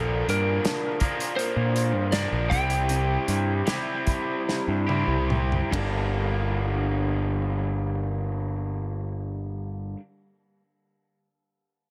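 In straight 4/4 at 69-82 BPM, this brooding, cathartic stretch of quiet-loud alternative rock in G dorian slows down over its first 6.1 seconds, with a drum fill from 4.5 seconds. A loose indie drum kit of hi-hat, kick, ride, snare and toms plays from 0.3 to 5.9 seconds, its tight kick and medium-tuned snare set in a small room with a rolled-off top. Up front, a growling picked bass, bright and overdriven, and a raw, lo-fi garage guitar riff sit on chords moving from Bb to C and on to Gmadd9. A lightly driven, compressed lead guitar carries the melody with tape echo until 5.2 seconds. Further back, a twangy, slightly broken-up guitar through a small old amp plays warm arpeggios with tremolo and tape echo. Light reverb and small room ambience round out this section cut from a longer piece.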